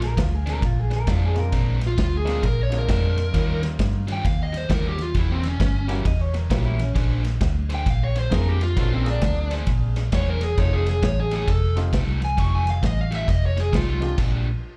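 Overdriven electric guitar riffing, a dark, round, foam-muted bass sitting up front and a vintage drum kit with a punchy kick and dark cymbals open this soulful, swaggering electric blues shuffle at 133 BPM in Bb mixolydian, heard as a live gig through the venue's PA with club reverb. A warm, slightly broken-up, lo-fi guitar through a small old amp adds a brief second line in short bursts, the first ending at 1.8 seconds, while the picked riff guitar carries a slapback echo. A clear, woody, slightly detuned upright piano comes in at 1.3 seconds with long-sustained accompaniment, and a smooth, dark lead guitar enters at 1.9 seconds, its overdriven melody colored by slapback echo and digital delay. The drums, with a medium-tuned snare, crash and ride, have a pumping small-room sound and a rolled-off top. The harmony moves through Bb9, Eb9, Edim7, back to Bb9 and on to F9 before the band hits a stop on Bb6 at 14.2 seconds, in a passage cut from a longer piece.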